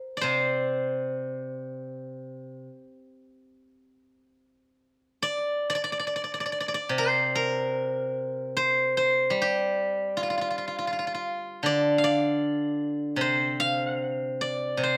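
Pastoral and flowing, this Chinese traditional piece for solo plucked strings unfolds in a free, rubato 4/4 around 69-79 BPM in the C shang mode. A steel-string zither plays alone throughout the 15.0 seconds, its bright, silvery tone ringing up front under fingerpicks across a span from C3 to F5. The dry outdoor sound leaves little reverb, and the music moves into a new section at 5.2 seconds in this brief cut from a longer piece.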